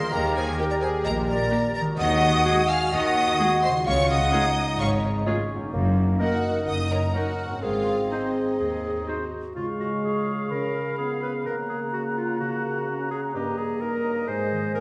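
This cinematic cue has a magical, quirky mood, moving at a straight 128 BPM in 4/4 in Db major and cut from a longer piece. A studio violin section carries the melody with expressive vibrato and portamento, while a second violin line sits beneath it, smooth and lush. Clarinet, airy flute and a distant, roomy oboe weave second lines over a mellow bassoon accompaniment and sustained French horn chords, with a concert harp ringing out arpeggios in the background. Rich cellos and double basses hold the bass, and a very quiet viola section fills the middle. The strings fall away near 9.3 seconds, leaving the winds, horns and harp to carry the closing passage through to 14.8 seconds. A recital-hall reverb of about 1.8 seconds lends the whole sound a soft, church-like glow.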